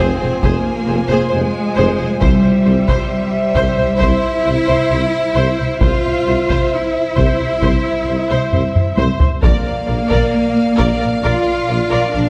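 A clear, focused cello section plays up front in this heroic, dramatic orchestral film-score excerpt, carried by mellow French horn chords, a lush background of violin sections with smooth vibrato, an expressive viola section with portamento, and a bass of soft-attack double basses and a mellow tuba, while a close, dry taiko ensemble struck with heavy sticks drives the pulse and lands a fill from 8.5 to 9.4 seconds, all set in a wet concert hall.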